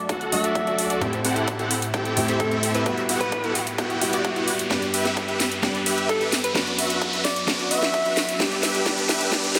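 Huge, detuned supersaw chords lead this triumphant, euphoric progressive house build-up, sitting up front with subtle chorus, tape echo, a low-pass filter and sidechain pumping as a filter sweep runs through the whole passage. A breathy alto saxophone enters at 0.3 seconds with a dark, subtone jazz-style solo full of scooped notes, sounding distant and roomy under its own tape echo, and drops out at 8.4 seconds. Beneath it, a polished baby grand piano plays accompaniment with sidechain pumping, while an electronic riser hovers in the background. The house kit brings a cracking snare and metallic hats close to the listener, a very quiet, punchy electronic kick sits underneath, and a drum fill carries from 4.7 seconds to the end of this fragment of a longer piece. The harmony moves from D through Am7 and Emadd9 to G, D and G6, framed by a lush hall reverb and a dense, heavily limited modern master.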